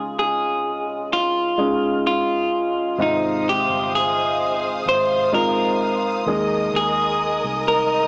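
Hopeful and heartfelt, this slow 64 BPM pop ballad in Ab major opens with a bright, twangy clean electric guitar carrying the melody over a dark, worn baby grand piano, joined at 3.0 seconds by lush, bowed symphonic strings with vibrato and a round, punchy muted fingered electric bass, with cassette-tape coloring on the guitar, piano and strings, light studio reverb, and the small-speaker character of a home cassette recording.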